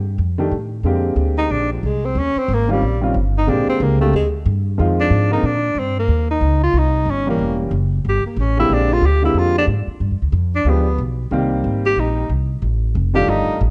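A woody, thumpy pizzicato upright bass opens this swinging, sophisticated excerpt of small-group jazz at 184 BPM in Bb mixolydian, with the concert grand piano joining at 0.4 seconds to comp through dominant-flavoured changes such as Bb13, Eb13 and G7b9. At 1.4 seconds the tenor saxophone enters up front with a smooth, vibrato-laden jazz solo. Light reverb wraps everything in a dark, warm production, and the piano contributes a vintage character and deep bass.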